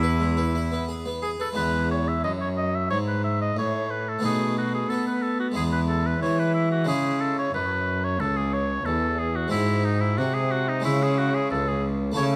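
A moderate recital-hall reverb surrounds this flowing, dance-like excerpt from a baroque-style sonata movement with continuo, its three players all placed up front. A clear oboe carries the melody until 12.2 seconds, while a rich, reedy cello, bowed by a single player with gut-string tone, anchors the bass, both sung with light vibrato, and a close-miked, brilliant French-style harpsichord with three sets of strings fills in the plucked accompaniment. The harmony moves from E through B7 and back before turning toward C#m and G#7.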